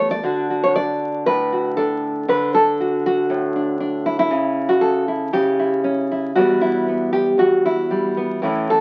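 Crackle from a very old 78 rpm record and a moderate studio reverb frame this short excerpt of wistful, haunting folk in E dorian, moving at a straight 117 BPM in 4/4. A solo nylon-string guitar sits up front throughout, fingerpicked with a full-bodied, deep classical tone and audible finger squeak, ranging from E2 to D5. Its harmony moves from D to A/C# at 4.3 seconds and settles on Emadd9 at 6.4 seconds.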